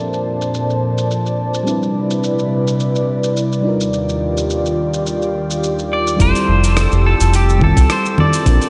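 Soaked in a long cathedral reverb, this dreamy, softly dulled stretch of sunset chillout has a sunny glow and a relaxed, lightly swung groove. An airy, breathy pad sits up front with chorus on its sustained chords, and a filter sweep on an analog synth pad runs through the opening section. A mellow FM electric piano adds soft, full-bodied accompaniment tinted by chorus, delay and cassette-tape character. A dusty, gritty sampler-style soul kit of congas, hi-hat, rim click and shaker plays from the start, muffled by low-pass filtering. At 5.9 seconds a bright, clean picked electric guitar brings the melody with subtle chorus and delay, and from 6.2 seconds a deep, round analog bass arrives up front beside a thumpy electronic kick set in the background, as the chords move from Bbmaj9, Cmaj9 and Ebmaj9 to Fmaj9.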